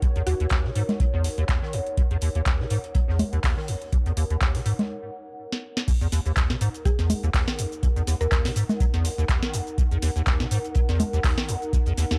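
Acid house at 123 BPM in Eb phrygian, driving and raw, with a 16th-note swing and a dry, gritty cassette-tape sound throughout this short cut from a longer piece. A squelchy, resonant square-wave acid bass riff sits up front over a deep electronic kick, a booming analog drum machine with crisp snare, metallic hats, handclaps, congas, cabasa and crash, and a very quiet compact cocktail kit. Meanwhile an ethereal, airy pad with ensemble chorus hovers beneath, and a moody, detuned analog pad holds an Ebm chord in the background until 4.9 s. A woody, mallet-like FM pluck with analog delay drifts in briefly at 0.3 s. After a brief break with a drum fill, the drop arrives at 5.9 s, and the pluck returns at 6.9 s.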